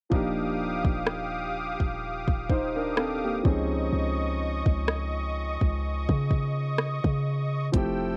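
From the first moment, a concert grand piano, a musette accordion, an 808-style bass and an electronic R&B drum kit sound together in this dreamy, smooth slice of contemporary R&B, cut from a longer piece. The tempo is a slow 63 BPM in 4/4 with a gentle swing on the sixteenths, and the harmony moves from Ebmaj9 to Dbmaj9 at 3.4 seconds. The up-front piano plays accompaniment with a natural tone and deep low end, while the reedy, shimmering accordion holds vintage, band-limited sustained chords above it, pumping with sidechain compression. Beneath them the boomy, mellow 808 bass has a fast attack that decays into a sine-based depth with a noise layer. The produced kit sits up front with a soft kick, warm hats and rim clicks, stopping at 8.0 seconds just before the other parts end at 8.2. Piano and accordion both carry cassette tape coloring and plate reverb, and the home cassette recording has a light reverb overall.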